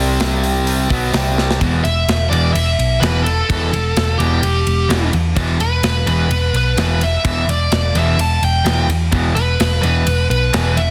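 A dense, heavily limited modern master with light reverb and a small room ambience frames this aggressive, heavy hard rock excerpt in E minor, moving at 128 BPM in a straight 4/4. Two picked guitars share the riff from the start: a bright, high-gain distorted guitar and a warm, overdriven semi-hollow guitar, both spanning E2 to C4 over a progression of C5, B5, C5 and E5 power chords. Beneath them, a dark, round hollow-body short-scale bass sits up front in the low register, picked and amped. A tight metal drum kit comes in at 0.2 seconds, with bright cymbals, hi-hat, ride, a medium-tuned snare and a tight kick, the kick and snare carrying soft clipping, and it drops a fill at 1.4 seconds. At 1.8 seconds a smooth, overdriven lead guitar enters up front, carrying the melody between G4 and A5 over the riff for the rest of the clip.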